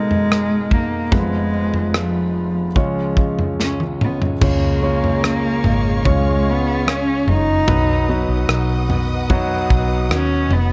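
Melancholic and emotional, this slow pop ballad fragment sets an up-front, woody cello singing the melody with vibrato and portamento over intimate concert grand piano with audible action noise, a fingerpicked jumbo steel-string guitar in the background and a punchy, rolled-off drum kit whose fill at 3.6 seconds leads to the entry of a distant, lush string section and a round, foam-muted electric bass at 4.4 seconds, all in a dark, small-room production.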